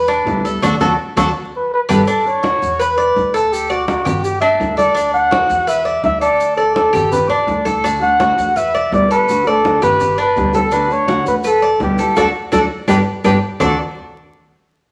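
Vinyl crackle and a wet large-studio reverb frame this danceable Cuban son and guajira at 166 BPM in D major, where a dark, veiled trumpet with bucket mute plays a breathy, scooped, vibrato-laden jazz solo up front over a metallic, double-stringed Cuban tres picking arpeggios, a woody, thumpy pizzicato upright bass, ringing soft-handed congas, grainy maracas in the background, and a thumb-plucked classical nylon-string guitar that sounds from 0.2 to 2.0 s and returns at 7.8 s, with band accents and fills punctuating the opening and the close.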